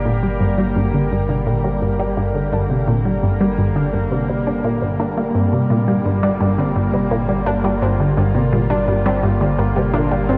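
A squelchy, resonant blip pluck sits up front with a phased, tape-echoed riff, over an evolving wavetable pad's sustained G minor chords steeped in shimmer reverb, a deep, round analog bass on G1 with tube saturation, and a lo-fi, warbling dusty pluck arpeggiating in the background as it fades in under a filter sweep, all in a hypnotic, mysterious ambient excerpt at 85 BPM bathed in lush hall reverb and worn cassette-tape pitch drift.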